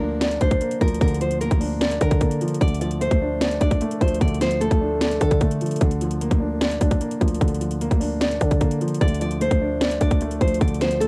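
Dry and close, this short home cassette recording of a brooding, melancholic trap beat gives its guitar and piano the coloring of cassette tape. A dark, mellow baby grand piano sits up front as the accompaniment throughout, its intimate, natural tone and short sustain carrying audible action noise. A fingerpicked nylon-string guitar plays a classical-leaning acoustic melody; it drops out at 5.8 seconds and returns at 9.0 seconds, while the harmony moves between Bb over D and D minor. Beneath them, a growling, buzzy 808-style bass with a fast attack and a decaying sine body holds the low end. The electronic trap kit arrives at 0.2 seconds with a half-time feel, its hard-clipped kick, sharp snare and metallic hi-hats overdriven and re-recorded in a small room, sitting up front as the loudest part.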